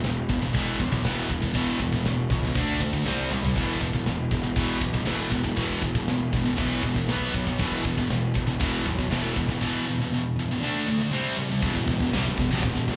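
Epic and aggressive, this heavy metal cut in E minor drives at 119 BPM in a straight 4/4, with a bright, scooped high-gain guitar up front and a dark, sludgy overdriven guitar in the background both playing the riff over power chords moving between E, D, C and B, anchored by a growly fuzz-drenched picked bass. A tight metal kit with bright cymbals, a medium-tuned snare and a tight kick fills a big room, dropping a fill at 3.3 seconds. At 11.6 seconds a very quiet, brassy, airy analog pad enters on a sustained E minor chord, all heard through a live club PA with light reverb.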